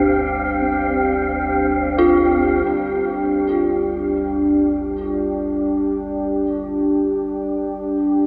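Cavernous and unsettling, this free-time dark ambient drone excerpt rests on a G5 chord, with a deep, moody, up-front sawtooth pad holding sustained chords over a low, ominous wave-folded drone and an airy, breathy wind-like noise texture, while an eerie, inharmonic FM synth bell enters at 2.0 s with warbling chorused arpeggios trailing into diffuse delay, a filter sweep moves across the drone from 2.7 s, and a huge studio reverb with an 8.1 s decay makes the whole space feel vast.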